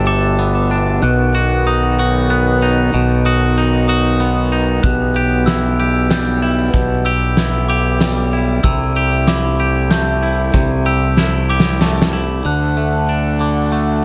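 Soaring and hopeful, this post-rock excerpt in 3/4 rests on a reedy, breathing pedal harmonium holding sustained chords in the background, while a twangy, bright electric guitar and a bell-like glockenspiel struck with soft plastic mallets weave arpeggios through tape echo. A fuzz-drenched fingered bass sits up front throughout, and a loose indie drum kit with a fat snare and punchy kick joins at 4.8 seconds, playing a fill from 11.2 seconds before dropping out at 12.2 seconds. The chords move from Gadd9 through B, Em/B and C6 to a D at 12.4 seconds, all set in a small room with light reverb.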